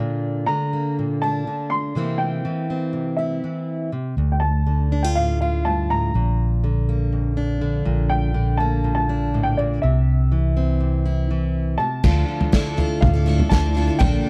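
Indie folk in D minor at 122 BPM, stirring and yearning, this excerpt opens with a fingerpicked steel-string acoustic guitar up front and a dark, woody, slightly detuned upright piano carrying the melody from 0.5 seconds over chords moving from Bbmaj7 through C7, Dm and Gmadd9/Bb. A round, amped fingered electric bass arrives at 4.2 seconds, and at 12.0 seconds the arrangement builds as a shimmering, octave-doubled twelve-string acoustic guitar and a punchy acoustic drum kit played with bundle sticks, with dark cymbals and toms, join on Dmadd9. The sound is dry and close, in the manner of a 1970s studio recording.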